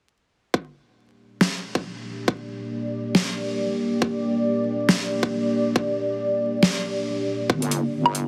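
This short deep dubstep cut, taken from a longer piece, sits in G minor at 138 BPM with a half-time, swung 4/4 feel and a meditative, brooding mood over a single G minor chord. A punchy, overdriven electronic kick opens at 0.5 seconds, and a layered dubstep drum kit of deep snare, metallic hi-hats and woodblock soon joins, both re-recorded in a small room and placed up front. At 2.0 seconds a dark, warbling ambient pad of detuned sawtooth voices with a sub octave fades in slowly, holding sustained chords with chorus and its own reverb. A heavy, resonant wobble bass with a square-wave core and saturated, compressed weight arrives on a low G only at 7.5 seconds, just as the kick drops away. A huge ambient reverb hangs over the mix, while heavy multiband compression, a squeezed radio-like tone and vinyl crackle give the whole piece a gritty character.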